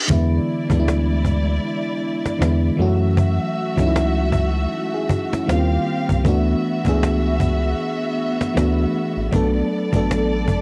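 A home-cassette sound with light reverb frames this late-night, longing contemporary R&B excerpt at 78 BPM with a swung 16th feel, as an up-front, mellow FM electric piano and a dark, woody bowed string section with vibrato, both colored by tape and plate reverb, carry chords moving from E7 through F#m7, D#69 and D69 to Bm7, over a rubbery, bouncy square-wave bass and a snappy, close cajon played with hard hands.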